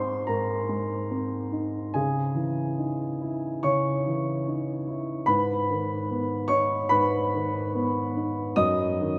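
A dark, mellow grand piano sits up front and carries this brief, melancholic fragment of neoclassical minimalist music entirely alone, spanning from F#2 up to D#6. The tempo hovers around 73 BPM in 4/4, though the rubato feel lets time breathe and bend. Set in G# minor, the harmony moves from G# through C#madd9 and G#m before landing on D#m/F# near 8.6 seconds. A long, wet cathedral reverb, as heard in a church or concert hall, surrounds the instrument and lends the intimate mood a sense of vast, echoing space. Lasting just over nine seconds, this excerpt is cut from a longer piece.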